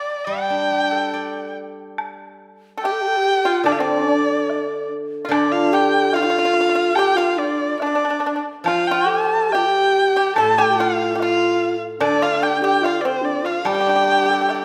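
The rhythm moves freely in a rubato duple metre, giving this Chinese traditional chamber music, cut from a longer piece, a pastoral yet festive lilt. A single bowed erhu carries the melody up front from the opening, its focused, boxy tone shaded with vibrato and portamento. Just behind it, a steel-string zither played with fingerpicks rings out a bright, silvery accompaniment across a broad register. A very quiet, close and dry woodblock joins at 2.0 seconds. At 2.8 seconds two second lines enter together: a close-miked, end-blown bamboo xiao, breathy and mellow in its low range, tongued with vibrato and slightly unsteady, and a dry, percussive pipa plucked with fingerpicks. The ensemble sits in a wet recital hall reverb that lends the performance a spacious glow.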